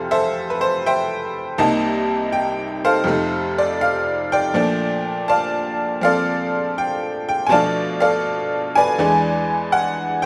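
A tack piano opens this relaxed solo jazz fragment, its metallic, jangly tone sitting up front as it swings gently at 81 BPM in F major. Moving through Fmaj7, Cm7, F7 and Bbmaj7 before turning to Bm7b5 at 7.5 seconds and E7 at 9.0 seconds, it spans a range from low C2 to A5 with a percussive, vintage character. A wet studio reverb surrounds the rough home-demo sound, and the clip ends at 10.3 seconds as part of a longer piece.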